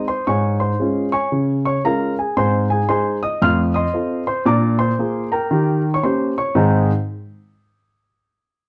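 A grand piano, up front and warm with a short sustain, carries this exuberant, playful stride-piano excerpt alone from 0.0 to 6.9 seconds, swinging in 4/4 at 114 BPM in A-flat major, tuned slightly low to A4 = 438 Hz. Its harmony moves from Db/Ab to Ab, then through F7, Bb7 and Eb7 back home to Ab at 6.5 seconds, covering a span from F2 to F6. A moderate club reverb and a dark production give the piece an intimate, nightspot feel.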